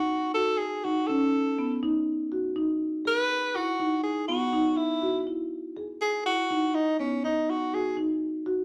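Brooding and intricate, this short progressive instrumental fragment moves in an odd 11/8 metre, with a breathy, jazz-style tenor saxophone carrying a solo melody with vibrato until 8.0 seconds. Beneath it, a woody, rounded marimba played with soft mallets spins mellow arpeggios over a rootless B7 that settles onto Emaj7 at 3.1 seconds. A wet studio reverb places the pair further back in the room.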